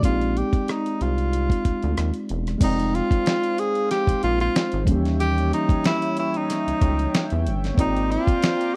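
A lightly swung 93 BPM groove in 4/4 drives this smooth, sultry neo-soul and R&B fragment in F dorian, with a gritty, compressed sampler-style drum kit up front (thumpy kick, fat snare, hi-hat, rim click and crash) beneath a rubbery, bouncy square-wave bass. A mellow, slightly out-of-tune tine electric piano bathed in lush chorus plays chords moving through Bb13sus4, Fm7, Eb7b9 and Abmaj9#11, while a breathy tenor saxophone with light vibrato and scooped notes carries the jazz-inflected melody. From 2.6 seconds a shimmering, retro pulse-width pad slips in quietly behind, and the mix sits in a dry, close 1970s-style studio sound.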